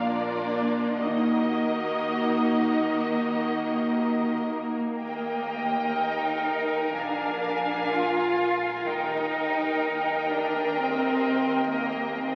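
A solemn, elegiac classical string orchestra opens together in Eb minor at a rubato 57-66 BPM in 4/4, with a lush, vibrato-rich violin melody above a background second violin line, close, up-front violas, lush, up-front cellos, and a bowed double bass section underneath, before the harmony turns to Eb major at 5.0 s, all bathed in wet scoring-stage reverb and the crackle of a very old 78 rpm record in this fragment cut from a longer slow romantic movement.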